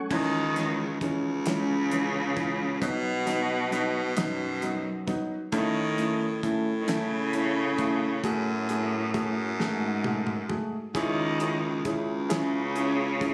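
This six-eight pop ballad in C# minor moves at a slow 44 BPM in dotted quarters, with a straight, aching and dramatic feel, in a passage cut from a longer piece tuned to A4 = 444 Hz. A single bowed cello carries the melody up front, its focused, clear tone marked by vibrato and a slapback echo. A felt-muted upright piano supplies soft, mellow, intimate accompaniment, while a baritone saxophone holds the bass line in a jazz style, sitting forward with a light vibrato. A damped 70s drum kit adds an acoustic, dry, polished pulse with dark cymbals, a fat snare and a tight kick under a rolled-off top, and plays a fill from 9.6 to 10.9 s. The harmony moves from C#m through B, A and F#madd9 before returning to C#m at 10.9 s, and the sound carries little reverb, as if captured on a phone in the room with some studio reverb added.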